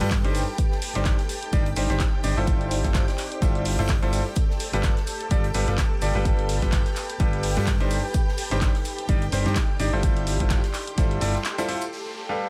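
Piano house at 127 BPM in G mixolydian, joyful and euphoric, where a clear, vintage grand piano riff with low-pass filtering and digital delay pumps over an overdriven, round fingered electric bass, a punchy analog kick placed up front, handclaps and hi-hats from an analog drum machine, background shaker, hats and snare from a big rock kit, shimmering string-machine violins with ensemble chorus, and a cloudy granular pad, all moving through Cmadd9/G, Fmaj7/G and G9 before a brief break and an electronic downlifter at 11.9 seconds.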